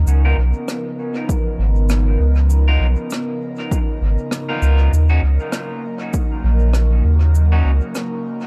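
Ambient dub with a spacious, meditative mood, moving in 4/4 with a gentle swung sixteenth feel across this short cut from a longer piece. An airy, breathy pad holds sustained, detuned chords from the start, softened by chorus and phaser, shifting from Db13 to Ebm7 at 4.9 seconds. Underneath, a deep, round sub bass sits up front with a mellow, sustained tone. A punchy, overdriven electronic kick joins at 1.3 seconds, while a cabasa and rim click played with brushes carry a small-room feel through dub echo. A twangy, slightly broken-up electric guitar adds picked stabs through subtle chorus, a low-pass filter and dub echo, and a filter sweep runs on the guitar. The mix is dry in reverb but heavy with echo.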